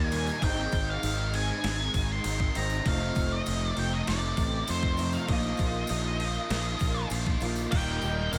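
A growly, up-front fingered electric bass anchors this blissful, wistful shoegaze and dream-pop rock fragment alongside a thumpy, overdriven 8-bit drum machine with a medium-tuned snare and crash, a jingly tambourine in the background, a dark, clean guitar riff under reverse reverb, a compressed overdriven guitar riff with ensemble chorus, and a fuzzy octave-fuzz lead melody through digital delay, as the chords move from Ab through F7 and Bbsus4 to Eb, where a bright, double-tracked distorted guitar slips in behind at 7.7 seconds, all in a fairly dry room.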